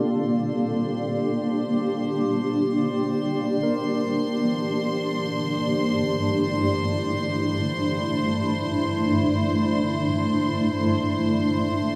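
Spacious and melancholic, this ambient passage is cut from a longer piece and centers on a cloudy, wave-folded granular pad that sits up front, holding sustained chords with a slow attack, long release and its own built-in reverb while a filter sweep moves across it for the full 12 seconds. Behind it, a barky tine electric piano traces bright, clean arpeggios through tape echo, fading in gradually from the start. A studio violin section adds a reedy, gut-string texture high above, bowed in period style with light vibrato and a close ensemble sound, also fading in across the whole passage. The harmony rests on Gm7 before shifting to Dsus2/G at 5.2 seconds. A wet concert hall reverb with a long tail envelops the blend, framing the pad's blurred, evolving haze.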